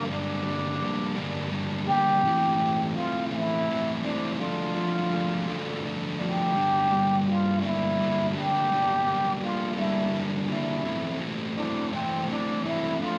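Melancholic and cathartic, this short rock fragment in 6/8 sets a bright, plunger-muted trombone melody with a wah-wah tone and light vibrato, heard distant and roomy, against an up-front, double-tracked fuzz guitar riff, both playing throughout as a band captured live in one room with wet studio reverb.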